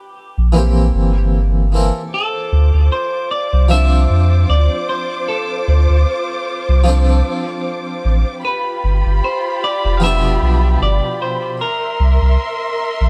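A swung 76 BPM trip hop groove in D minor carries a dark, melancholic mood, with a round, deep sub bass up front beneath a clean, picked electric guitar melody with tape echo, a brilliant, close-miked harpsichord playing with tremolo and echo until 11.6 seconds, and a lush, distant violin section entering at 2.1 seconds with vibrato and portamento over chords moving from C7 through Dm7 and G7, set in a small room ambience in this passage cut from a longer piece.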